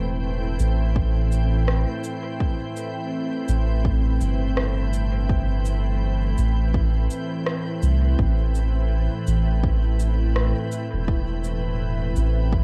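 A soft, organ-like pad holds a sustained A minor seventh chord from the start, its pure, full-bodied tone thickened by ensemble chorus, built-in reverb and cassette tape colour, while a round, deep dub sub bass sits up front beneath it. Electronic cabasa and rim click enter at 0.6 seconds carrying dub echo, and at 1.0 seconds a layered, overdriven electronic kick joins, both re-recorded in a large room. The result is spacious, meditative ambient dub at 83 BPM in 4/4 with a gentle 16th-note swing, captured as a home cassette recording with light reverb and cut from a longer piece.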